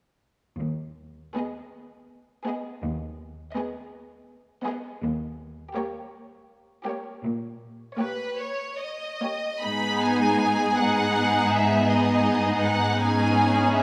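Solemn and elegiac, this slow romantic movement for string orchestra unfolds in a flexible, rubato 12/8 as it is cut from a longer piece. A close, focused cello section lays down the bass from 0.6 seconds, and at 1.4 seconds the violins enter with a lush, vibrato-rich melody, joined by a clear second violin line and an even, bowed viola accompaniment. A moderate reverb evokes a church or concert hall, and a new section begins at 9.6 seconds.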